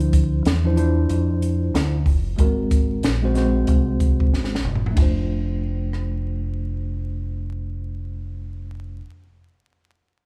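Jazz-hop with a cool, warm mood, this short excerpt from a longer piece moves at an easy swung pace in 4/4. A worn, slightly out-of-tune tine electric piano carries the mellow chords throughout, clean and up front, moving from Dm9 to Ab9 before settling on F6 as the second section begins at 5.0 seconds. Beneath it, a deep dub fingered electric bass holds the low end with a round, punchy, direct-amped tone. A compact cocktail drum kit, dark and smooth with a high-tuned snare and punchy kick, works through hi-hat, ride, rim clicks and toms, plays a fill just before the section change, and drops out at 6.1 seconds. The whole is set in a moderate concert-hall reverb with a layer of vinyl crackle.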